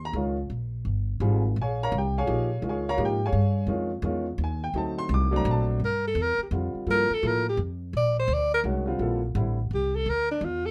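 Modal jazz in a cool, hypnotic 3/4 swing at 170 BPM, cut from a longer piece, where a natural, woody upright piano comps and an up-front pizzicato upright bass with steel strings anchors the low end in Bb dorian, until at 5.8 s the music shifts to G dorian and a warm, breathy alto saxophone takes an up-front solo with subtone and vibrato while the piano drops out at 9.6 s, all set in a moderate club reverb.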